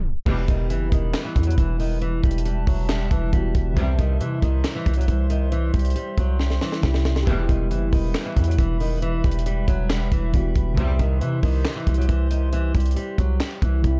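Eerie and hard-hitting, this half-time trap hip hop excerpt at 137 BPM in E harmonic minor opens on a tape stop and pairs a dark, fingerpicked flamenco guitar melody, filtered and touched with delay, with an aggressive, heavy distorted 808-style bass and a tight, dry funk drum kit with a high-tuned snare, handclaps, hi-hat and crash, both up front, while a mellow, boxy grand piano sits in the background, a nostalgic, lo-fi tape-like pad warbles through chorus and reverb, and clear, lush bowed string stabs mark each change between Em and C, with a drum fill from 6.4 to 7.3 seconds in a dark, small-room production.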